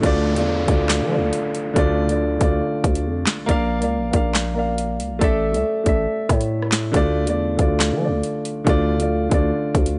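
Ominous and tense, this drill hip hop excerpt moves at 139 BPM in a half-time 4/4 feel in D minor, with a dark, mellow concert grand piano up front cycling through Dm, Bb, Asus4 and back to Dm over a growling, buzzy 808-style bass with a fast attack and decaying tail. The electronic drill kit sits up front too, with a hard-clipped kick, sharp snare, metallic hi-hats, handclaps and rim clicks re-recorded in a small room, while an electronic downlifter sounds only through the first 3.5 seconds. The sound is dry and gritty, with a dulled top end.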